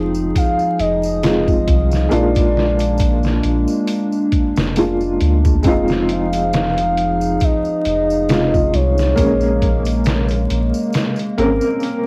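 Trip hop at a slow 68 BPM in F minor, this brooding, cinematic passage is cut from a longer piece and moves through Fm7, Bb7 and Bbm9 with a lightly swung 16th feel. A felt-muted upright piano plays soft, intimate accompaniment with short sustain, its tone shaded by tremolo, cassette tape and tape echo, while a warbling, nostalgic pad holds dark sustained chords through chorus, its own reverb and gritty 12-bit sampler texture. Underneath, a deep, round dub sub bass sits up front with tube saturation. A pure, breathy sine lead carries the melody high above from 0.4 to 10.1 seconds, gliding with vibrato and portamento through chorus, tape and echo. The sampler-style drum kit is compressed and pitched down, with a thumpy kick, medium-tuned snare and hi-hat, joined by a faint tambourine, and the kick drops out at 10.9 seconds. The whole recording has the dry, homespun feel of cassette, dusted with vinyl crackle.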